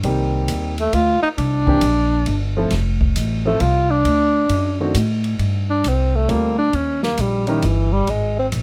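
A swung three-beat groove drives this cool, small-group jazz fragment: an airy acoustic drum kit with dark cymbals and a boomy kick sits behind a woody pizzicato upright bass up front and a polished baby grand piano accompanying from the start, while a breathy, whispered tenor saxophone with scooped notes and vibrato enters at 0.8 s and takes a solo at 5.4 s, all captured close and detailed in light reverb.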